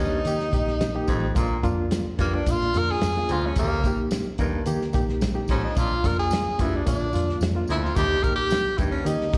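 Danceable and uplifting, this uptempo 1960s-style soul excerpt at 109 BPM in Bb major features a breathy, up-front tenor saxophone soloing with vibrato and scooped notes over a barky, overdriven electric piano with fast tremolo, a raspy baritone saxophone riff, a round foam-muted fingered bass, a fat-snared soul drum kit entering at 0.2 seconds, a jingly tambourine and very quiet congas, all heard through a live venue's PA with recital hall reverb.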